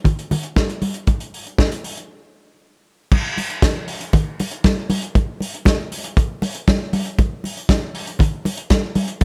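Celebratory and glamorous, this short disco excerpt at 118 BPM in a straight 4/4 pairs bright, damped congas with thin skins and a soft-handed touch against an up-front vintage drum kit of punchy kick, medium-tuned snare, hi-hat and crash cymbal with a rolled-off top, set in a small room, everything kept dry, with a break at 2.1 seconds before a new section arrives at 3.1 seconds.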